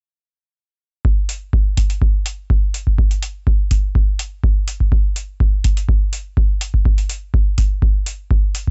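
A straight 4/4 acid house groove at 124 BPM starts at 1.0 seconds with a deep, up-front analog kick drum, and metallic analog hi-hats join at 1.3 seconds, sitting well beneath it. Both carry a tape-warm grit that gives this short, trippy fragment of a longer piece its character. The sound is dry and dark at the top, with little reverb around the drums.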